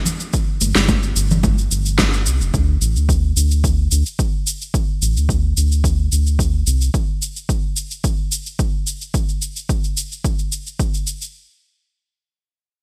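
The round analog bass stands out most, a deep, dark sawtooth-and-sine tone with a fast attack and sustained notes moving between F1 and D2, sitting up front under a filter sweep until it stops at 6.9 seconds. This is relaxed, wistful sunset chillout in D minor, taken from a longer piece, moving at 109 BPM in a straight 4/4. A punchy, layered electronic kick drum and a fat electronic snare paired with shaker carry the beat, the snare and shaker treated with studio and gated reverb and the kick with studio reverb, both placed up front. Acoustic congas played with hard hands add a live-room texture only in the opening 1.6 seconds. The production is bright and in a 1980s digital style, set in a small room ambience, with the kick dropping out at 10.9 seconds and the snare and shaker continuing to 11.3 seconds before a brief closing section.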